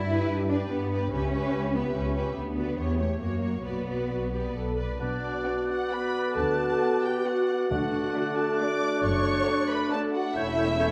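Urgent and stormy, this classical passage in B minor moves in a rubato 3/4 at roughly 130-146 BPM, cut from a longer piece. The strings carry it from the outset: violins sing a focused, smooth-topped melody high above a second violin line, violas fill in a distant, expressive accompaniment, and cellos and an up-front double bass section anchor the bass with soft-attacked, vibrato-rich bowing. At 5.0 seconds the woodwinds and brass join, bringing a bright oboe, a pure flute perched high, a very quiet clarinet, a mellow, roomy bassoon, and a dark, distant French horn section holding sustained chords. A round, soft-mallet timpani stroke sounds in the background at 7.7 seconds. The harmony passes through diminished and half-diminished colors before settling on B minor and moving toward D major, closing on an A7 chord. A recital hall reverb with a 1.8-second decay wraps the ensemble in a lush, spacious glow.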